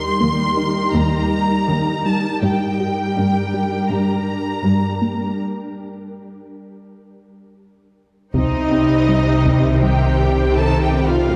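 An airy, ethereal pad sits up front, holding sustained chords over Eb and Gm with ensemble chorus and its own reverb, while a squelchy, resonant blip pluck runs arpeggios behind it through chorus and tape echo, and a violin section carries the melody over bowed cellos on the bass. This is a vast, futuristic hybrid of orchestra and electronics for film, in C dorian at 81 BPM in a straight 4/4, heard from further back in a scoring-stage reverb. At 8.3 seconds, violas and a heavy-stick taiko ensemble enter, the taiko hitting briefly in the background. At 8.4 seconds, a second violin line, a mellow horn section and a double bass section join as the harmony turns to Cm, before this excerpt cuts off at 11.4 seconds.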